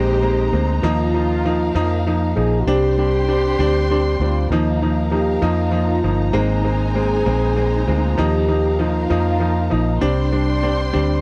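A swaying, romantic six-eight pop ballad excerpt in a dry, close 1970s-style studio sound, where a dark, round, foam-muted electric bass sits up front beside an intimate grand piano with audible action noise and short sustain, while a mellow, tight French horn section carries a second line over the strings' vibrato-rich sustained chords with expressive portamento, moving through suspended and added-ninth harmonies.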